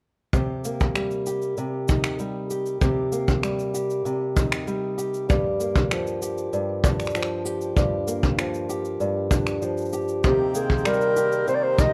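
A straight 4/4 pulse at 97 BPM opens this wistful, intimate folktronica fragment in C minor, cut from a longer piece, carried by a tight, up-front kick drum with a mid-forward, rolled-off top and the touch of brushes, alongside electronic cabasa and finger snaps roughened by overdrive and a small room ambience. From 0.3 seconds an old ladder-braced acoustic guitar plays fingerpicked arpeggios between G2 and G4, its dark, woody, boxy tone and old strings sitting close and trailed by delay. The harmony moves from Cm7 to Gm7 at 5.3 seconds and back to Cm7. At 10.2 seconds a growling clarinet takes a solo jazz-style melody spanning G4 to Eb5, raspy and gritty with a subtone, light vibrato, soft attack and scooped notes, heard up front yet with a distant, roomy quality. A pedal harmonium enters at the same moment with sustained chords spanning Eb3 to G5, reedy, breathing and full, close-miked and dry. 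The whole has the rough feel of a home demo in a small reverberant room.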